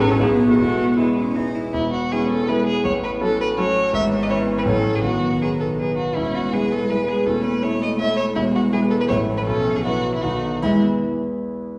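Heard from further back in a reverberant recital hall, this brief, spirited and cheerful classical-period passage for piano quartet moves in triple time with rubato. A rich violin carries the melody with vibrato and portamento, an intimate cello with an airy bow adds a second line, and a focused viola sits in the background, while a clear, polished concert grand with deep bass accompanies up front and plays on alone after the strings stop at 10.8 seconds, until 11.8 seconds.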